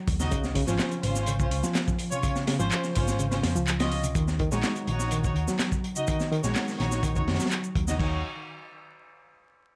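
A worn, slightly out-of-tune reed electric piano opens this gritty, energetic breakbeat excerpt with a lightly overdriven riff, its fast tremolo and tape echo coloring the line as a round, hollow-body picked bass and a crunchy, saturated breakbeat kit with a punchy kick, high-tuned snare and dark cymbals arrive up front, joined by a tape-warm analog drum machine adding handclaps, hi-hat and shaker. Distant, bowed chamber strings with expressive vibrato and 12-bit sampler grit add dark stabs over a shift from Dbmaj7 to Ebm7, while the kick drops out from 3.2 to 4.2 seconds. From 4.2 seconds, filter sweeps run across both the bass and the electric piano beneath a light reverb and a layer of vinyl crackle.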